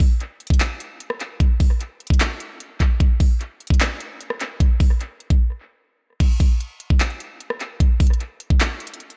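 This hip hop excerpt moves in a half-time 4/4 feel and carries a wistful, dreamy mood. A single electronic trap drum kit plays throughout, made up of kick drum, hi-hat, handclaps, rim click and crash cymbal. The kick has a knocking, produced weight, the hats sound crisp, and the whole kit sits up front in the mix. Tape echo on the drums gives the dry recording an echo-heavy character. A break arrives at 5.4 seconds, and a new section begins at 6.2 seconds and runs to the end of the clip.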